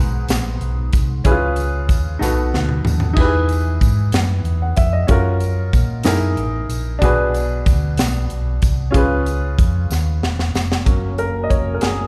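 Uplifting and soulful, this slow gospel passage in 6/8 and F# major at 62 BPM sets a clear, up-front baby grand piano over a dark, round hollow-body electric bass and a crisp, polished fusion drum kit with a high-tuned snare and tight kick, with drum fills at 2.2 and 9.9 seconds and a jingly tambourine tucked in the background, before a mellow French horn section with light vibrato enters at 10.9 seconds on sustained chords as the piano takes a brief solo, the whole heard in a church-like hall with moderate reverb.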